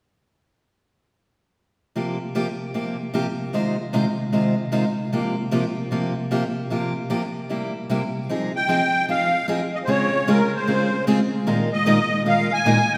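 A picked steel-string acoustic guitar opens at 2.0 seconds, its warm, up-front tone carrying audible finger squeaks as it comps through suspended and minor chords in F minor at a swinging 151 BPM. At 8.6 seconds a reedy musette accordion takes the melody up front, its shimmering musette tuning adding a bittersweet edge to this fiery jazz passage. Both sit in a long, wet church reverb, and the guitar stops at 12.8 seconds as the fragment cuts off mid-piece.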